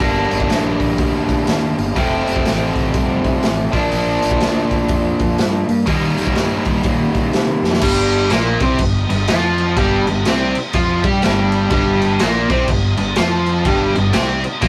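A swung 123 BPM groove in G minor drives this heavy, smoky blues rock and southern rock power-trio excerpt, where a biting, bright, double-tracked overdriven guitar riff sits up front over a growly fuzz fingered electric bass and a gritty, punchy raw garage drum kit with a pumping small-room sound, moving through Gm, F, Bb and Eb before a drum fill at 7.6 seconds leads into a new section back on Gm, all captured as a rough rehearsal-room recording with saturated character and modest booth ambience.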